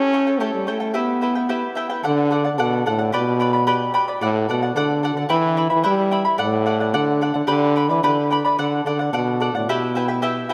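Soaked in a lush hall reverb, this dreamy excerpt of Andean folk moves at 110 BPM in a straight 2/4, tuned to A4 = 438 Hz, with a wistful yet festive mood. A warm French horn carries the melody up front in a classical style, its soft attack, smooth top and light vibrato trailed by tape echo, while a bright, fingerpicked acoustic charango accompanies with shimmering double strings, some doubled at the octave. After an opening A7, the harmony circles through D, G and Em, and a new section begins at 2.0 seconds.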